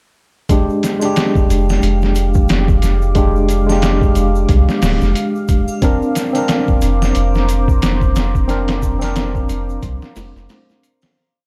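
Trip hop at 90 BPM in F dorian, dark and brooding, built on a lazy swung sixteenth-note groove that runs from 0.5 seconds to the end and fades out from 7.6 seconds. The sampler-style drum kit sits up front with a thumpy, muffled kick, a medium-tuned snare and hi-hat, pitched down, compressed and overdriven with 12-bit grit, playing a looped breakbeat with edits that sounds re-recorded in a small room. A worn, slightly out-of-tune tine electric piano carries the harmony in close-voiced held chords with syncopated pushes, lightly overdriven through a combo amp with harmonic tremolo and tape echo, moving from Fm69 to Bbadd9/F at 5.8 seconds. From 1.5 seconds a round, soft dub sub bass lays down a deep dub-style line, while a moody detuned pad with a sub octave, slow attack, chorus, built-in reverb and long release swells in beneath from 1.6 seconds. A faint acoustic shaker and triangle rattle loosely in the background, adding air to a dark, warm production.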